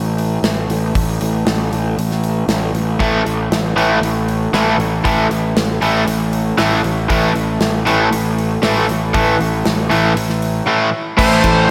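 At a straight 117 BPM in 4/4, this menacing, heavy hard rock excerpt opens on a fuzzy, punchy overdriven bass with a gated 80s drum kit of punchy kick, medium-tuned snare, hi-hat, ride and bright crash cymbals, then at 3.0 s a bright, up-front crunchy guitar and a cranked stack guitar, both overdriven with slapback echo, pile on the riff, and at 11.2 s a dark, smooth lead guitar and a very quiet, double-tracked high-gain guitar arrive just before the cut, all inside a big arena sound with concert hall reverb.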